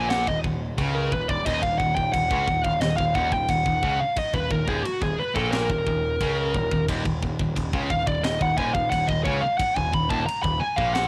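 Heavy metal in Eb minor at 88 BPM in a straight 4/4, this excerpt from a longer piece is dark and aggressive throughout its 11.1 seconds, resting on a single Eb minor chord. Up front, a warm, high-gain lead guitar with distortion carries a solo melody from Gb4 to Cb6 across the whole passage. Behind it, two picked riff guitars sit low between Eb2 and Db3, one bright and overdriven, the other bright and distorted with high gain. A growling picked electric bass, punchy and overdriven with a direct, amped sound, holds the bottom from Eb1 to Db2. A tight metal drum kit enters at 0.1 seconds with a tight kick, a high-tuned snare and bright crash cymbals, sounding polished and airy in a big room. The whole thing carries the character of a home recording on cassette with studio ambience.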